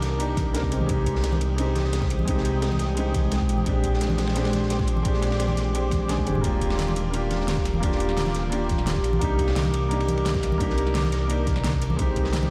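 A deep, rumbling detuned saw bass sits up front in this dreamy, uplifting liquid drum and bass excerpt at 173 BPM, its beating sawtooth tone holding the low end beneath a dark, mellow grand piano dressed in lush chorus and delay. An ethereal, airy pad carries sustained chords with a slow attack and long release, its ensemble chorus and vintage 12-bit sampler grit adding a faintly grainy shimmer. The harmony moves through Cm9, Bb13 and Ebmaj9 in a straight 4/4 groove. Two drum kits are layered: a pop kit with a fat snare, metallic hats and toms, and a gritty, saturated breakbeat kit with dark cymbals and a high-tuned snare. A punchy electronic kick and background congas join at 0.4 seconds, and a short drum fill lands at 6.1 seconds. The whole mix is soaked in a lush hall reverb, giving the fragment a hazy, floating feel.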